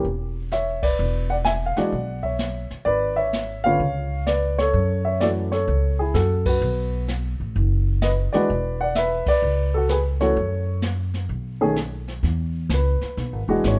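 Lightly reverberant and natural, this playful, swinging jazz piano trio excerpt in E mixolydian at 128 BPM pairs a dark, mellow grand piano with short sustain carrying the melody up front over a woody, thumpy pizzicato upright bass on gut strings and a brushed drum kit with dusky cymbals and a boomy kick, the trio hitting accents together at 0.8, 6.4 and 9.2 seconds before the piano takes a brief solo from 12.2 seconds.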